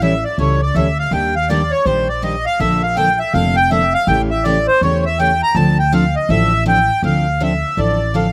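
Virtuosic and swinging, this short excerpt, cut from a longer piece of acoustic string swing in the jazz manouche style, moves at a brisk 162 BPM in D minor with a swing feel on the eighth notes. The reedy accordion carries the melody up front, soloing from the start until 7.0 seconds, its tone marked by slow beating and slapback echo. Beneath it, a picked steel-string acoustic guitar supplies full-bodied dreadnought accompaniment, while a pizzicato upright bass with gut strings adds a woody, dark, thumpy foundation. The harmony passes through A7, Ebmaj7, Bbmaj7 and back to A7 before settling on Dm7, and a new section begins at 7.0 seconds. Recorded outdoors with little reverb, the sound is dry and free of room sound.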